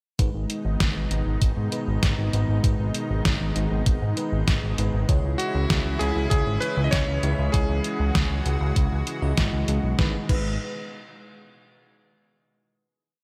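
Synthwave at 98 BPM in G# minor, nocturnal and cinematic, built on a fat, nasal analog bass running sequenced sixteenth notes under a lush, detuned unison pad with chorus and sidechain pumping, while an FM electric piano with a soft pad layer adds dreamy chorused stabs with syncopated pushes through slapback echo and delay. An overdriven, thumpy electronic kick and a detuned 8-bit drum machine with a tape-tinged snare backbeat, closed hi-hat and crash drive the verse as the harmony moves from G#m to C#m at 5.1 seconds. A bright, clangy electric grand piano carries a motif-based melody from 5.4 to 9.3 seconds with vintage 12-bit grit and tape echo, before the piece settles on a final G#m chord at 10.0 seconds in light reverb.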